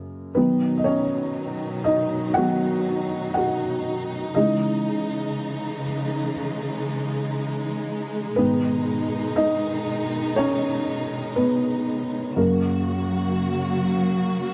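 Tender and emotional, this slow 60 BPM pop ballad in B major centers on an intimate felt-muted upright piano, soft, dark and boxy with audible action noise, carrying the solo from 0.0 s, while a lush bowed studio string section with expressive vibrato and a smooth top enters at 0.4 s to hold sustained chords through B, C#madd9, G#m and F#, set in a moderate echo chamber reverb with a layer of vinyl crackle across this short cut from a longer piece.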